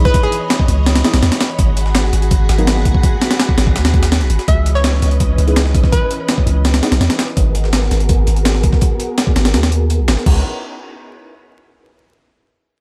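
An overdriven, gritty breakbeat kit with a thumpy kick and medium-tuned snare drives this raw, frenetic drum and bass and jungle cut at 166 BPM in C# dorian, sharing the front with a deep, sine-based 808-style bass, while a pitched-up, tape-warm second break with high-passed hats and snare ticks away in the background. Silky string-machine chords with ensemble chorus sustain over C#m9 and G#m9 and take a filter sweep from 4.5 seconds, alongside dark, wave-folded chord stabs dressed in phaser and dub echo. A glassy harmonics texture drifts behind until 4.5 seconds, a hollow, detuned square pluck bounces through brief bright phrases with dub echo, and vinyl crackle coats the whole excerpt.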